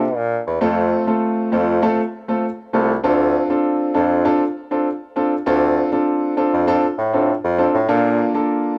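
A grand piano and a bassoon begin together in this hypnotic, sultry afrobeats piece, set in D minor at 99 BPM in a straight 4/4. The piano carries the accompaniment in its middle register, with a boxy, intimate tone, audible action noise and a long sustain. Beneath it, the bassoon plays the bass line in a classical style. Its vibrato and roomy, distant character give the low end a soft glow, even though it sits up front in the mix. The harmony opens before any chord sounds, moves to F, settles on Dm7 at 3.0 seconds and reaches Bbmaj7 near the close. The bassoon stops at 8.2 seconds while the piano rings on to 8.8, framed by light reverb, small-room ambience and a dark, warm production.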